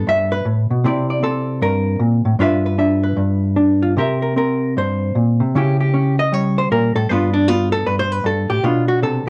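A dark, clean hollow-body electric jazz guitar plays fingered and compressed, up front and alone from 0.0 to 9.3 seconds through chords such as G69, C13, C#dim7 and G9, in a relaxed, swinging 4/4 solo jazz excerpt with a rubato feel, heard through light reverb and worn cassette tape with warbly pitch drift.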